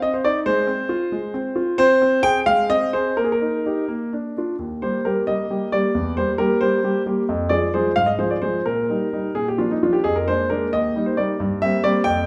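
Restless and dramatic, this short cut from a longer classical-period piano sonatina unfolds in 6/8 with a flexible, rubato feel. A single concert grand carries the whole piece, its tone natural and up front, with a deep bass reaching down to Eb2 and lines rising as high as G5. The opening phrase moves through Fm/Ab, Ab and Eb/Bb before settling on Bb, and a second section arrives at 4.6 seconds on an Eb chord. From there the harmony darkens through C7/E and Fm, then turns back through Bb7/F to Eb before closing on an open C5/G at 11.4 seconds. A wet recital hall reverb surrounds the instrument, giving each phrase a lingering, resonant tail.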